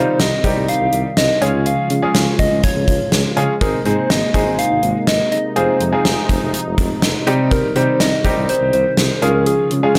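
Wistful yet upbeat synth-pop at 123 BPM in 4/4, cut from a longer piece: a round, gentle FM synth lead with chorus and tape echo carries the melody over brilliant, up-front grand piano accompaniment, a detuned sawtooth pad that evolves in the background, and a punchy tuba bass with vibrato, while a gated 80s kit with a fat snare and tight kick enters at 0.2 seconds in an airy stone room, all moving through Cm, Db, Abadd9 and Fm7 under light reverb.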